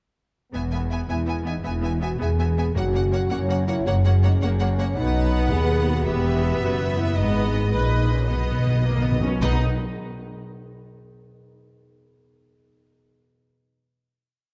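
From 0.5 seconds the strings, a French horn section and a mellow concert harp sound together in this heroic, adventurous film score in B major, moving at 108 beats per minute in a straight 12/8. A clear violin section carries the melody with smooth vibrato and repeated notes, while a second violin section supports it softly in the background and a rich viola section fills the middle with chords that follow the tune's rhythm and answer at phrase ends. The horns hold soft-attacked sustained chords with light vibrato, and the cellos and studio double basses anchor the bass, the cellos placing notes on the beats with passing tones and the basses doubling that line. The harp rings out very quiet fingerpicked broken chords spanning a broad range, as the harmony travels from E through F# to B, then Em and G#m before returning to B. Articulate, close timpani played with hard mallets enter at 2.8 seconds, adding single strokes on bass notes, and roll into a fill from 8.3 seconds. 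Once the ensemble stops at 9.6 seconds, the harp lets the final chord ring on in a dark, moderately reverberant concert hall.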